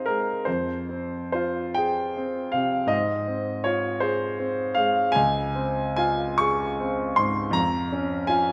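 A clear, up-front concert grand piano opens this brief, dreamy romantic nocturne excerpt in a tender, rubato 6/8, its deep bass and open tone drifting from F minor through Dbmaj7 to Db over F, softened by a moderate scoring-stage reverb.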